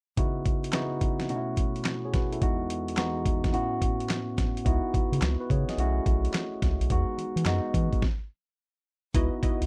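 A dry, close recording in a 1970s studio style frames this short, punchy cut of new jack swing R&B at 107 BPM in C# minor, with a slick 16th-note swing. A clean, direct tine electric piano sits up front with a phaser from the opening 0.2 seconds, moving through chords such as C#m11, B9sus4, Emaj9 and A69. Beside it a dusty, sampler-style drum kit of kick, snare, hi-hat and handclaps sounds gritty and compressed, its overdrive giving the thumpy kick and medium-tuned snare real bite. A round, dark analog bass with a sine-like depth arrives at 4.7 seconds, and at 8.0 seconds the chords break off for a stop before the C#m11 returns. A funky, detuned polysynth comp with chorus adds a brief, plucky stab at 9.1 seconds.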